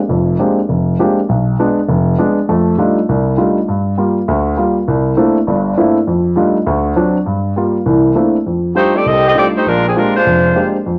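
A mellow baby grand piano opens this joyful, brassy swing jazz fragment in F major at 200 BPM, comping up front with long sustain through chords such as Bb13, Bdim7, Gm7 and C13, before a dark, vintage saxophone section with light vibrato takes the melody at 8.8 seconds, all set in a moderate large-studio reverb and coloured by the warbling pitch drift of worn old cassette tape.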